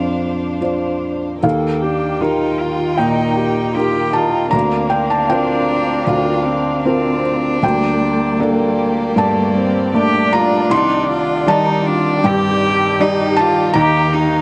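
A felt-muted upright piano, mellow and intimate with audible action noise, underpins this tender, hopeful neoclassical piano-and-strings excerpt at a rubato 78 BPM, joined by a rich, floating sul tasto cello as a second line, a warm chamber string section holding soft-attack sustained chords, and a dark, nasal viola entering at 1.4 s, all moving from Bbadd9 through Ebadd9, Gmadd9/D and Cmadd9 in a snug booth ambience.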